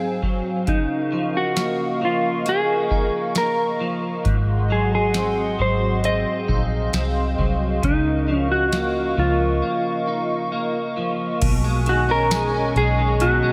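A booming analog drum machine drives a slow, straight 67 BPM pulse in 4/4, its deep kick, crisp snare, metallic hats, crash and tambourine sitting up front beneath a lush hall reverb in this ethereal, floating dream pop passage in Db major, cut from a longer piece. A mellow, dark, fingered electric guitar with digital delay carries the melody over clean, picked guitar arpeggios coloured by ensemble chorus and delay, along with a hollow, airy pad whose warbling, flute-like chords drift on a slow attack. A round, foam-muted fingered bass joins at 4.3 seconds as the chords move between Ab7 and Db69, then after a break the harmony shifts to Cb69 at 11.4 seconds, and a faint, pure synth bell chimes near the close at 12.3 seconds.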